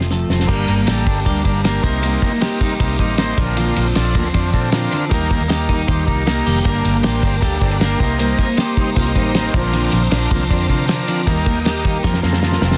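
A bright, twangy twelve-string electric guitar plays arpeggios with slapback echo through this short, nostalgic and youthful stretch of jangly indie pop, over a full-bodied fingerpicked acoustic guitar and a round, punchy muted bass. A dry, thuddy cloth-damped drum kit sits up front with a fat snare and dark cymbals, opening and closing with fills. A buzzy overdriven combo organ with light vibrato and a jingly tambourine join at 0.5 seconds, and a swirling, phased string machine adds sustained chords in the background from 6.7 seconds, all in a small room with a dense, heavily limited modern master.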